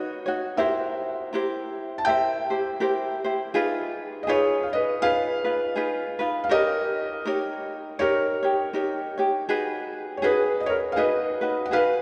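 A felt-muted upright piano carries the melody from the first moment, its soft, mellow tone sitting close and intimate, while a bright, fingerpicked ukulele accompanies it throughout the 12 seconds. This is a relaxed, sunny Hawaiian piece at 81 BPM in 4/4, with a gentle swing on the eighth notes. The piano's thin felt sound keeps its lines tender, and the ukulele adds a light acoustic sparkle beneath it, both parts placed up front. The harmony drifts through Ebm7, C7, Fm7b5 and Eb7 before settling on Abm7, tuned slightly below standard pitch at A4 = 439 Hz. A long, wet church reverb surrounds the pair, giving the small ensemble the airy resonance of a large hall, and the clip is cut from a longer piece.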